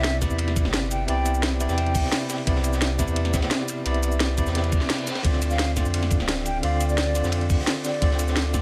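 This dreamy, lush liquid drum and bass excerpt opens with an airy, hollow concert flute playing the melody from the background, its tongued notes carrying vibrato and a tape echo. Beneath it, a barky electric piano, lightly overdriven through a combo amp with fast tremolo and its own tape echo, plays the accompaniment over a chord move from Cmaj9 to Dm7. A deep, sustained sub bass with an added octave sits up front alongside two layered drum kits: a dark, rolled-off breakbeat kit with a high-tuned snare and high-passed small-room ambience, and an overdriven garage kit with a cracking snare, cabasa, hi-hat and ride. A thumpy, compressed electronic kick joins at 0.2 seconds, adding grit from a small room. A very quiet reverse cymbal sounds at 4.7 seconds, and the flute, after a pause, returns at 5.5 seconds over a dry, close mix.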